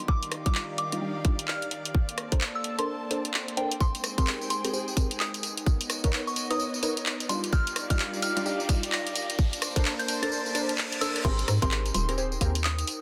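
UK garage in a bouncy, soulful two-step vein at 129 BPM with swung sixteenths, this excerpt builds from the start as a pure, gentle FM synth bell carries the melody over a breathy, sidechain-pumped pad, a nasal, detuned sawtooth chord stab under a filter sweep with tape echo, and bowed studio strings with vibrato, moving through major-ninth chords. A tight, up-front electronic kick and a layered garage kit of claps, rim clicks, tambourine, crash and warm hi-hats drive it, while a very quiet riser enters at 6.4 seconds and a reverse cymbal follows. At the drop at 11.2 seconds a hollow, knocking FM bass with tube saturation arrives, all set in a moderate plate reverb within a dense, heavily limited modern master.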